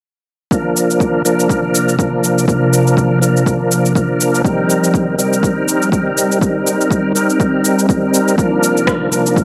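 Afro house at 122 BPM with a swung sixteenth feel, this driving, warm excerpt sets a punchy, overdriven electronic kick and a gritty shaker and rim click under bright, reedy tonewheel organ stabs, which sit up front with chorus vibrato, a slow rotary speaker, key click, delay and sidechain pumping. From 1.3 seconds an ethereal, airy pad of detuned unison voices with a noise layer holds sustained chords through ensemble chorus, phaser, pumping and a filter sweep, moving between Bb/C and Cm7. A moderate plate reverb wraps the dark production.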